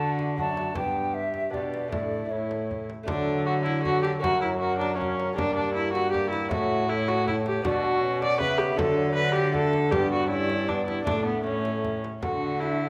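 A stately, courtly renaissance-style consort dance in triple time opens with an airy, tongued concert flute melody over a reedy, gut-string viola second line played up front by one bowed player, a rich period-style cello bass, a bright, delicate fingerpicked lute with double strings, and a clear, distant trombone set back in the room. A frame drum played with hard hands enters at 0.2 s, close and dry in the background, while a moderate recital-hall reverb surrounds the consort. The harmony moves from D through G and a suspended A, later passing through F#, G minor and B minor before settling on D at 12.2 s in this excerpt.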